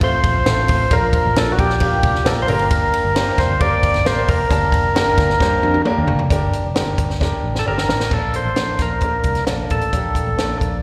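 A straight 4/4 groove at 133 BPM drives this uplifting, danceable slice of uptempo 1960s-style soul in Bb major, cut from a longer piece. A compact cocktail drum kit sits up front, dry and natural, with a tight kick, high-tuned snare, dark cymbals, hi-hat, ride and toms, and it plays fills at 5.4 and 7.2 seconds. Beneath it, a vintage muted picked electric bass gives a round, foam-muted, amped low end, while a bright upright piano adds woody, brilliant accompaniment with slapback echo. The melody comes from a percussive tonewheel organ, lightly overdriven and full, with third harmonic percussion, key click and a stationary speaker, placed up front with its own slapback echo. The chords move from F to Bb and Gm before landing on Bbmaj7 at 8.1 seconds, and the whole band is heard as a live gig through the venue's PA, with small room ambience and recital hall reverb.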